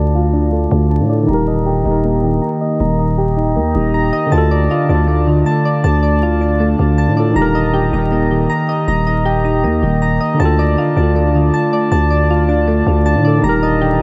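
A half-time 4/4 groove drives this menacing, melancholic hip hop cut, with a growling, buzzy 808-style bass up front beneath chords that alternate between Dm and Eb. Soft, airy synth keys with chorus play arpeggios through tape echo, while a worn, slightly out-of-tune tine electric piano, heard as if through built-in speakers, adds low-passed accompaniment. A filter sweep runs through the first 4.3 seconds, a new section arrives at 10.4 seconds, and the echo-heavy mix carries light reverb and vinyl crackle.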